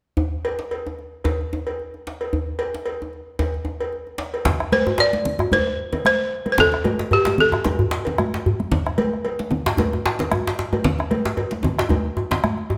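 West African traditional drum ensemble music, festive and powerful, moves at 112 BPM in 4/4 with a light sixteenth-note swing, cut from a longer piece. A djembe struck with hard hands and a metallic, band-limited cowbell open the passage; at 4.5 seconds a second, up-front djembe joins them, along with a round bombo sitting in the background and damped, high-tuned congas played with soft hands. A woody, buzzing balafon struck with hard rubber mallets carries the melody up front from 4.7 until 8.4 seconds, heard within a moderate recital hall reverb.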